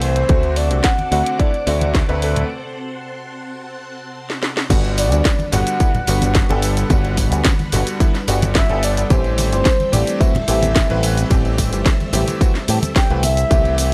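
Nu-disco with a sunny, feel-good glow at 109 BPM in G major, where a round, octave-layered synth lead carries the melody through chorus, phaser and tape echo over clangy electric grand piano and a lush, slow-blooming string machine that both pump with the sidechain, while an up-front picked bass with an envelope filter, a punchy electronic kick arriving at 0.3 seconds, a house kit with a cracking snare, and hand-struck congas and tambourine in the background push from a brief break and drum fill into the drop at 4.7 seconds, moving from D7 through Gmaj7 and Am7 to C6 in a dry, gritty recording.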